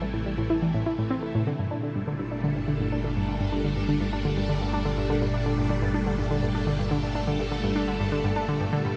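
A huge ambient reverb, its tail lasting about 7.7 seconds, surrounds this short cut from a longer piece of sequencer-driven space music, giving it a mysterious, hypnotic air in a straight 4/4 pulse. Up front sits a swirling, vintage string machine holding slow-attack sustained chords, its warbling tone colored by ensemble chorus and phaser. Beside it, a bright analog pluck repeats a riff with a fast attack and short decay, a ring-modulated edge and a noise layer, passed through chorus and tape echo while a filter sweep runs across its arpeggiated line for the whole passage. Underneath, a deep, dark analog bass with a detuned, sustained body holds the low end quietly. The harmony moves from Am to Gmadd9 at 1.5 seconds, and all three parts play together from the start to about 9.0 seconds.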